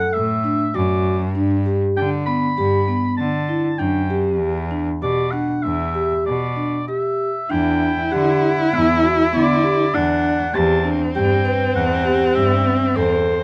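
Contemporary chamber music in 5/4 at 98 BPM, urgent and hypnotic, this excerpt pairs a warm, distant oboe melody with ringing, mellow vibraphone arpeggios played with soft mallets, while a rich, boxy bowed cello holds the bass with light vibrato. At 7.5 seconds a second cello enters up front, dark and expressive with vibrato and portamento, as the harmony moves from Dadd9, G and Em7 to Gmaj7/E and Cmaj7/E. The sound is close and detailed, with little reverb.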